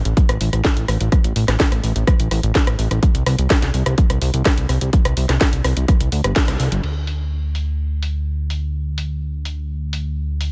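Melancholic and hypnotic, this short excerpt from a longer melodic techno piece moves at 126 BPM in a straight 4/4. A fat, detuned sawtooth bass sits up front between G1 and D2, its sustained notes with a fast attack thickened by tube saturation, moving through a filter sweep and pumping against the sidechain. A punchy electronic kick drives the groove from 0.2 seconds until it drops out at 6.5 seconds, just after a band accent at 6.4 seconds. Alongside it, a layered house kit of crash cymbal, hi-hat, rim click and a cracking snare is re-recorded in a small room, with low-pass filters dulling the hats, snare, cymbals and room sound. The mix is dry and close, its top end capped at 10.7 kHz, and the second section, which begins at 6.8 seconds, carries on with bass and kit alone.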